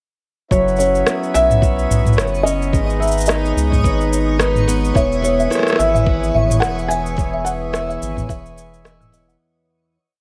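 A lightly swung, hopeful folktronica groove starts at 0.5 seconds: a soft, tape-tinged electronic kick sits under an overdriven, up-front click kit of cabasa, rim click and low toms that gives a found-sound feel. A round analog bass holds long, gliding, deep notes, while a bright, shimmering twelve-string acoustic guitar, filtered and octave-doubled, picks a sparse fingerstyle pattern with faint finger squeaks. Over a reedy, breathing pedal harmonium pad, a felt-muted upright piano carries the hook phrases, its thick felt and audible action noise giving it an intimate, dark tone softened by delay. A reversed, granular texture holds a dreamy, detuned high note in the background, and at 5.0 seconds a tinkling music box adds a second line: a seven-step loop, echoed by delay, that drifts against the bar. The small-room ambience keeps this pastoral piece close and gentle as it fades out from 6.4 seconds.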